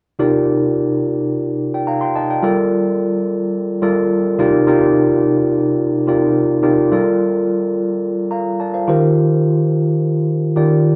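Pop excerpt at 107 BPM in C dorian, urban and slick in mood, featuring a mellow, clean tine electric piano alone and up front through its built-in speakers, moving from Cm11 to Gm9 and on to Eb69 at 8.9 seconds, set in a wet small room with a live feel and a tuning of A4 = 436 Hz.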